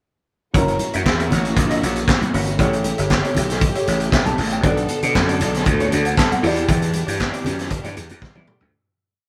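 Driving and glamorous, this short disco piece runs like a pre-chorus at a straight four-on-the-floor pulse, played by a band together in one stone room with moderate reverb, and it fades out from 6.7 seconds, with a closing drum fill arriving at 8.2 seconds. The vintage acoustic kit sits up front with a punchy kick, a high-tuned snare layered with handclaps, sixteenth-note hi-hats, toms and a rolled-off top, while the overdriven slap bass growls beside it with a bright, syncopated disco line. Behind them, a clean, twangy, compressed electric guitar picks choppy sixteenth-note figures, and a baby grand piano, intimate with audible action noise and short sustain, holds spread-voiced chords with grace notes and short fills. A lush studio string section bowed with vibrato lays a smooth sustained pad under the chord movement from F#7 through A7 and Bm7 to Em7. Very quiet congas with damped, thin-skinned hard-hand tones add a groove with a slap on two and open tones on four.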